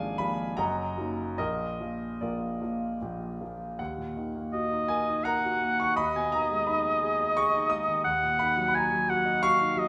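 In a 3/4 with a free, rubato pulse that drifts between 69 and 88 BPM, this short fragment of a romantic classical duo for oboe and grand piano unfolds in Eb minor with a yearning, melancholic mood. The concert grand plays the accompaniment throughout, from 0.0 to 9.9 seconds, with a warm, intimate, natural tone, deep bass reaching down to Gb1, and the sound of its action audible up front. Its opening harmonies move from Bb7 over Ab through Ebm over Gb to Bb, before settling on Ebm at 3.8 seconds as a new passage begins. The oboe enters at 4.5 seconds with the melody, sitting between Eb5 and Ab5, its clear, punchy, present voice carrying a light vibrato in a classical solo style. Beneath it the harmony shifts to Abm over Eb and returns to Ebm, both instruments sitting up front in a wet, reverberant stone room that lends the duo an echoing space.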